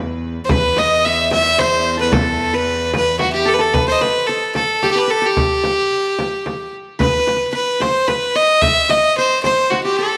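Longing and hypnotic, this Arabic maqam ensemble piece moves at 111 BPM in a straight 3/4, set in E maqam nahawand and cut from a longer piece. A distant symphonic cello section opens with a soft, floating E2 drone played sul tasto, holding until 3.8 seconds. From 0.4 seconds a single violin carries the melody up front, its tone clear and biting with an airy, nasal, earthy bow, and a tape echo trails its phrases. Behind it, a fingerpicked qanun plays a bright-edged second line over the same register, its triple strings set in the background, while a deep, large frame drum struck with hard hands sits close in the mix. The whole ensemble sits in a wet echo-chamber reverb with a 1.5-second decay, and the music moves into a new section partway through.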